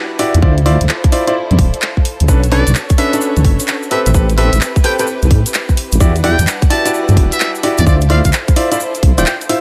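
A lush violin section holds sustained chords in the background with sidechain pumping, while a bright grand piano with audible action noise plays delayed stabs, opening this moody, bouncy two-step garage excerpt with swung sixteenths. A tight, up-front electronic kick and a deep, wobbling bass with chorus and its own sidechain pumping lock in with a garage kit of handclaps, hi-hat and rim click, and a grainy tube shaker joins at 2.3 seconds. A breathy, buzzy trumpet with a metal mute enters at 2.5 seconds as the jazz-style solo melody, its scooped notes and light vibrato echoed through delay, before a short break at 9.3 seconds.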